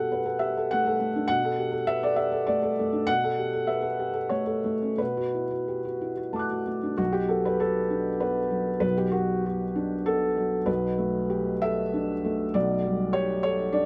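A felt-muted upright piano opens this brief neoclassical minimalist excerpt, playing alone for its full 13.9 seconds in B minor. The tone is dark and intimate, with thick felt softening every note, and the instrument sits up front in a dry, close space. In a flexible 3/4 that moves with rubato between roughly 88 and 103 BPM, the harmony drifts over a steady B foundation from D/B to A/B and Bm7. At 7.0 seconds the music turns to a plain Bm chord before settling on Gadd9/B. The mood is melancholic and reflective, spanning the keyboard from B1 up to F#6.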